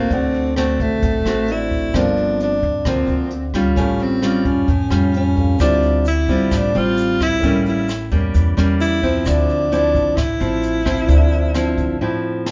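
A breathy, subtoned tenor saxophone with plate reverb carries a smooth, wistful bossa nova melody over fingerpicked nylon-string guitar, a very quiet, intimate grand piano, woody pizzicato upright bass and airy brushed drums with a boomy kick, while a grainy egg shaker slips in at 5.6 seconds before a brief break where the piano adds a fill at 12.2 seconds, the whole mix heard from further back in a reverberant studio with a dulled top end.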